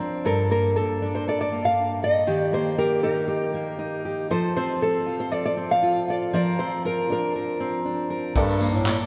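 A straight 4/4 pulse at 118 BPM carries this wistful, reflective acoustic pop excerpt in G minor. A full-bodied fingerpicked steel-string guitar holds the accompaniment throughout, and a small, up-front nylon-string guitar carries the melody from 0.3 seconds over chords moving from Gmadd9 through Eb, F and Bbadd9/F. At 8.4 seconds a dark, woody upright piano returns very quietly beside a vintage bass clarinet, a punchy natural country drum kit with handclaps and a jingly, close tambourine, with the whole room ringing in a wet cathedral reverb.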